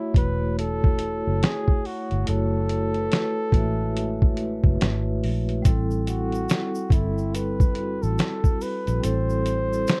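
A lo-fi hip hop groove at 71 BPM in 4/4 swings its sixteenths over a compressed, pitched-down sampler-style drum kit with a thumpy kick and a muffled snare, joined by a round, foam-muted electric bass, both sitting up front in this hazy, melancholic F# minor excerpt cut from a longer piece. A breathy, close-miked flugelhorn carries the jazz-style melody with scooped notes, while a mellow vibraphone with soft mallets, slow motor vibrato and a cassette-tape tint rings out the accompaniment as the harmony moves from F#m7 to Am7 at 5.7 seconds. At that moment a grainy tube shaker enters in the background, all set in a dark production with light reverb.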